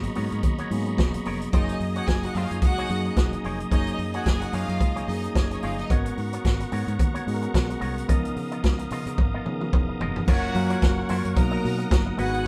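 Glamorous and danceable, this short disco excerpt in F# major moves at 110 BPM in 4/4 with a light swing on the sixteenths, its band caught playing live together in one room with light reverb. A punchy, up-front vintage drum kit with a medium-tuned snare and rolled-off top drives the groove on kick, snare, hi-hat, toms and crash, and a drum fill from 9.2 to 10.3 seconds leads into a new section. A round, foam-muted fingered electric bass anchors the low end, while a mellow tine electric piano heard through its built-in speakers accompanies and a reedy, bright tonewheel organ with key click and chorus vibrato holds sustained chords. An electric guitar with an envelope filter sits clean and compressed in the background. A rich chamber string section, bowed sul tasto with a soft attack and a pure, floating sound, adds a second line from 1.5 to 5.9 seconds and returns at 10.3 seconds, as the harmony moves through lush chords such as G#m11, F#69 and C#13 before settling on F#maj7 and Bmaj7.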